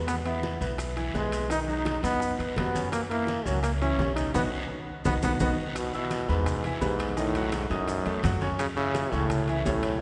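A clear baby grand piano and a woody, thumpy upright bass open this festive, danceable salsa excerpt together, the piano intimate with audible action noise and long sustain, the pizzicato bass dark and steel-strung. Almost at once a bright, punchy trombone takes the solo melody up front, its pop-style line carrying a light vibrato and a smooth top. Beneath it sits a percussion bed: very quiet low-tuned congas with thick skins and soft hands, round bongos and ringing metal-shell timbales, joined by a raspy guiro and grainy, mellow maracas with a vintage, band-limited tone. The harmony moves from E through Badd9, F#7 and B, and a drum fill with a band accent runs from 4.3 to 5.8 seconds before the opening phrase returns over E, B7 and F#m7. A wet church reverb with a long tail gives the whole ensemble a hall-like spaciousness, and the sound is gently dulled at the very top.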